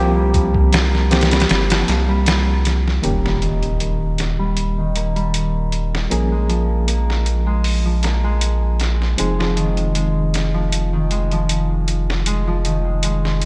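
A round, deep analog bass sits up front in this smoky, hypnotic trip hop excerpt, joined by a gritty, pitched-down sampler-style drum kit whose kick drops out from 1.5 to 3.0 seconds, a barky, lightly overdriven reed electric piano with fast tremolo and tape echo, and a ringing, fingerpicked concert harp playing arpeggios that take on a filter sweep from 3.0 seconds, when a background electronic impact also sounds.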